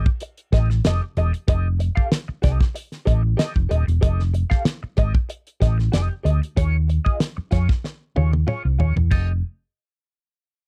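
A straight 4/4 funk groove at 94 BPM in F mixolydian sets a playful, funky mood in this short cut from a longer piece. A damped 1970s-style acoustic drum kit drives it with a fat snare, tight kick, dark cymbals, hi-hat and toms, sitting up front with a mid-forward character. A round, punchy hollow-body short-scale electric bass, fingered and thickened by tube saturation, holds the low end up front alongside the drums. A clean, picked electric guitar with wah and a compressed edge plays accompaniment higher up, set further back in the mix. The harmony rests on F9, moves to Eb9sus4 at 6.6 seconds, and a drum fill from 7.8 seconds leads back to F9 at 9.1 seconds, just before the parts stop. The sound is dry and close, like a 1970s studio with little room ambience.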